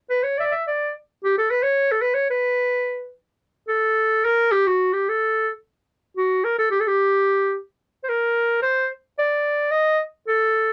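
In a straight two-four pulse, this short klezmer fragment, cut from a longer piece, carries a bittersweet, soulful mood. A lone clarinet with a clear, classical-style tone plays throughout, sitting up front yet sounding slightly distant and roomy under light reverb, with a change of section arriving at 3.4 seconds. The close, dry studio sound has a 1970s character.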